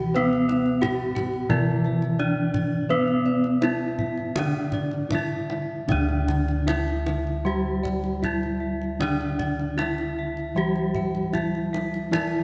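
Javanese gamelan with a shimmering, ceremonial mood, moving at 77-91 BPM in a straight 4/4 and tuned slightly low, taken from a longer piece and passing from its opening section into a second one at 5.9 seconds. Bronze metallophones struck with horn mallets carry the up-front melody, a lower accompaniment and a bright arpeggio line, the first two ringing with the shimmering beats of paired tuning. Mellow bossed gongs played with padded beaters hold the bass in a boxy small-room sound, while further bossed gongs add round arpeggios in the background and a deep kendang struck with hard hands joins at 0.2 seconds, all within a concert hall reverb with a long 2.5-second decay.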